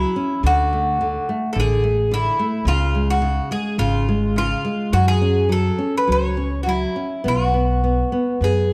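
The rhythm moves freely in a rubato 4/4, giving this short cut from a longer fado-style ballad a passionate, longing character. A Greek bouzouki carries the melody across the full 8.7 seconds, its picked double strings ringing metallic and warm, with some strings doubled at the octave. Beneath it, a nylon-string guitar fingerpicks a classical accompaniment with a warm tone and audible finger squeak. An upright bass plays pizzicato on steel strings, sounding woody and warm in the low register. All three instruments sit up front for the whole passage as the harmony moves from D to C#, then to F#5 at 4.9 seconds and B5 at 7.3 seconds. A moderate recital hall reverb surrounds the trio.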